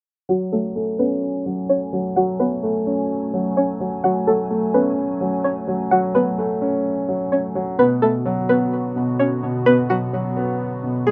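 A string-like resonator pluck carries the melody up front, its twangy, fast-attack notes decaying through chorus, delay and a low-pass filter, with a noise layer and a moving notch that shifts as a filter sweep runs from 0.3 to 11.1 seconds. This is a hard-hitting yet melancholic hip hop fragment in F# minor, set at 128 BPM in 4/4 with a half-time feel, cut from a longer piece. Beneath the lead, a dark concert grand piano supplies accompaniment in a low register, its mellow, vintage tone offering deep bass and short sustain, also placed up front. An airy, breathy pad sits farther back, holding sustained chords with a slow attack and long release, its detuned, faintly nasal character softened by chorus and filtering. The harmony rests on F#madd9 before moving to Bm at 7.8 seconds, all within a rough home demo mix with light reverb.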